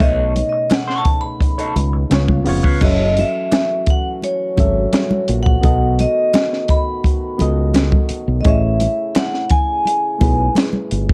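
A vibraphone with medium hard mallets rings out the melody with a slow motor vibrato over a barky, lightly overdriven reed electric piano, mellow French horns, a dark wah guitar riff that stops at 2.8 seconds, a round fingered bass, a compact cocktail drum kit with a high-tuned snare, soft-handed congas and very quiet group handclaps from 0.7 seconds, all in a lush, bittersweet 1970s-style soul groove at 85 BPM in F# dorian, moving from B9 through F#m7 and B7 to Amaj7 with the character of a home cassette recording, cut from a longer piece.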